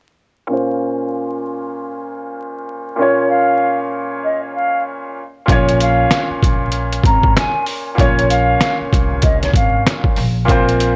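A dry, gritty recording with vinyl crackle and small-room ambience carries this dark, moody boom-bap hip-hop passage in Bb minor at 96 BPM, swung on the sixteenths and cut from a longer piece. A bright, woody upright piano with long sustain and a cassette-tape tint plays chords up front from 0.5 seconds under a filter sweep, and a distant, hollow concert flute with vibrato and analog delay enters at 3.0 seconds with a mellow melody. At 5.5 seconds a compressed, pitched-down sampler-style drum kit with a thumpy kick lands up front beside a growly pizzicato upright bass roughened by transformer saturation.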